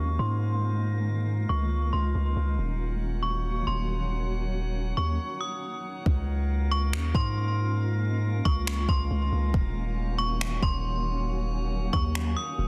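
Riding a half-time 4/4 feel at 138 BPM, this floating, blissful stretch of atmospheric cloud-rap hip hop gains its beat at 6.1 s, when a smooth, tape-warm R&B drum kit of finger snaps and a soft kick arrives up front with soft clipping on the snare, following a filter sweep and a brief stop from 5.2 s. Underneath, a deep sine 808-style bass holds long, decaying notes up front, while a blurred, wave-folded granular cloud pad pumps against the sidechain on Db69 and Ebm7 chords in Db major. Above them, an inharmonic, ringing FM bell with chorus and delay carries a high melody, and a faint glassy texture of drifting overtones hovers behind it, all within a dry, dense, heavily limited modern master.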